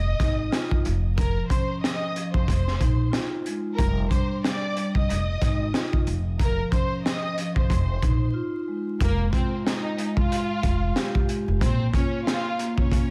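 Dark and moody, this boom-bap hip-hop excerpt in F minor rides a swung 92 BPM groove, with a crunchy, saturated breakbeat kit up front (punchy kick, high-tuned snare, hi-hat), a woody pizzicato upright bass that stops at 11.9 s, mellow soft-mallet vibraphone accompaniment, and a lush, bowed violin section melody with vibrato, portamento and digital delay, all wrapped in small-room ambience and vinyl crackle, before a brief break at 8.3 s leads into a new section at 9.0 s.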